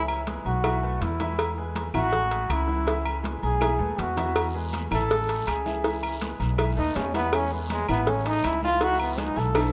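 A bright trombone takes the solo melody up front in this festive, danceable salsa excerpt, its distant, roomy tone carrying a pop-style line over a cycling progression of C#m7, B7sus4, E and Amaj7. Behind it, a brilliant grand piano comps in the background, intimate and polished, with its action noise audible. A dark, thumpy upright bass with gut strings sits up front, plucked pizzicato with a woody body. The percussion is layered: ringing metal-shell agogo bells and timbales and high-tuned, hard-handed congas sound far off in a large room, while a round, low-tuned cowbell and dry claves stay close. A drum fill arrives at 3.6 seconds, raspy guiro joins at 4.4 seconds, and the whole is wrapped in a lush hall reverb with the rough feel of a home demo mix.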